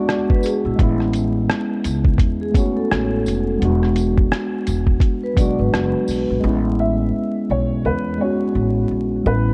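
Mellow and dreamy, this lo-fi hip hop clip in A major moves at 85 BPM with a 16th-note swing, framed by a dark production with vinyl crackle and light reverb. A clean, up-front tine electric piano and a woody pizzicato upright bass carry the harmony from Amaj7 to E7, joined by a compressed, pitched-down sampler drum kit with a thumpy kick and 12-bit grit, a jingly tambourine in the background, and a filtered, tape-echoed vibraphone with slow motor vibrato as a metallic second line. By 6.8 seconds the drums, tambourine and vibraphone have fallen away, and a soft, boxy felt-muted upright piano takes the melody over an Amaj9 chord.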